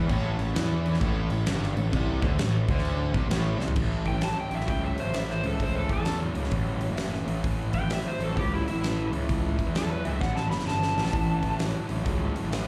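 Swung eighths drive this gritty blues-rock and southern-rock jam in 4/4, anchored by a huge arena drum kit with a fat snare and punchy kick, plus a growly, up-front fuzz bass under a bright, double-tracked fuzz guitar riff touched with slapback echo. A very quiet, shouting tonewheel organ with key click and slow rotary speaker holds sustained chords until 3.7 seconds, and from 4.1 seconds an overdriven slide guitar takes a warm, echoing solo melody, with a drum fill arriving at 10.2 seconds. It sounds like a live club gig heard through the venue's PA, cut from a longer performance.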